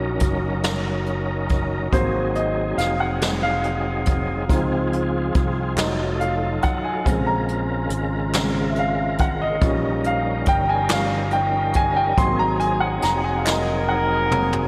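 A slow gospel groove in 6/8 at 47 BPM opens with a baby grand piano soloing over the whole passage, its long-sustaining, up-front tone carrying a slapback echo as it ranges from Db3 to C6. An overdriven tonewheel organ holds gritty, thick sustained chords through a fast rotary speaker and chorus vibrato, while a fingered electric bass adds a round, amped low end and brushed drums with a boomy kick enter at 0.2 seconds. The harmony moves from Ebm7 through Dbmaj7 and F7b9 to Bbm7, Eb7 and back to Ab7, giving the soulful mood a hopeful lift. Very quiet, hollow group handclaps join at 5.8 seconds, and near the close a dark, distant horn section takes up the melody at 13.5 seconds as the drums play a fill. Everything sits in a lush hall reverb that lends a big arena sound to this fragment cut from a longer piece.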